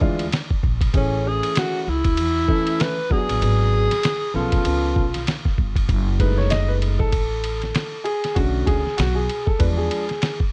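A mellow tenor saxophone leads this smoky, cool jazz-hop excerpt at 97 BPM, its subtone melody carrying vibrato, scooped notes and a smooth top through an analog delay. Beneath it, a dark, vintage baby grand piano with long sustain sits up front, alongside a woody pizzicato upright bass on steel strings and a sampler-style drum kit. The kit is compressed, pitched down and muffled, with a thumpy kick, a fat snare, hi-hat and ride cymbal, swung on the 16ths. The saxophone drops out at 5.2 seconds, and from 5.9 seconds the smooth piano takes a solo over harmony moving from F#m69 to Bm9 and back to E7b9. Light reverb and a dark, warm production give the whole excerpt its smoky, cool character.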